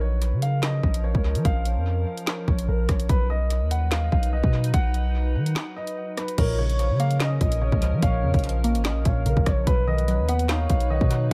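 Up-front drill drums, with a hard-clipped kick, woody snare, handclaps and hi-hats, drive this tense, menacing half-time hip hop excerpt alongside a deep, decaying 808-style bass, while a dark baby grand piano melody with tape echo and an ethereal FM pad with ensemble chorus hang in a digital, echo-heavy ambience, joined at 6.4 seconds by a smooth gliding portamento lead and a crystalline, warbling wavetable pluck in the background.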